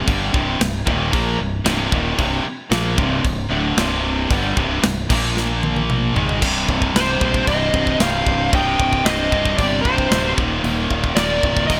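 Heavy metal in C minor at 114 BPM, this aggressive, heavy passage is cut from a longer piece and moves in a straight 4/4. Three rhythm guitars drive the riff throughout: a tight, bright distorted guitar, a high-gain distorted guitar set in the background, and a dark, double-tracked overdriven guitar also sitting in the background. A growly, direct fingered electric bass sits low under them, while an acoustic drum kit with a tight kick, medium-tuned snare, toms and crash cymbal plays up front with gated reverb, capping the first section with a fill from 5.4 to 6.4 seconds. At 7.0 seconds a smooth overdriven lead guitar enters up front with a melody carried on delay, joined by a quieter high-gain lead playing a second line beneath it, also with delay. The chords move from Cm through Bb5 and Ab5 before returning to Cm and closing on Eb5. The production is bright and 1980s-style digital, with light reverb and a small room ambience.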